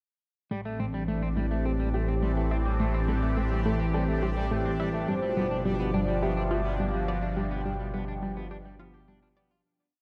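A bright, detuned resonant pad sweeps up front through slowly shifting Am7 and G7 chords in this mysterious, cosmic piece of ambient, sequencer-driven space music at 105 BPM in A minor, over a deep sine sub bass holding the root, a clean hollow-body electric guitar's fingered three-step arpeggio drifting against the bar, a round analog pluck's eight-step sequence with delay in the background, and a faint, bubbling resonant texture on a held high note, while a mellow, horn-like synth lead with vibrato and vintage 12-bit grit enters at 5.1 s with arching motifs, all bathed in huge, dark, warm reverb before a fade-out from 6.6 s.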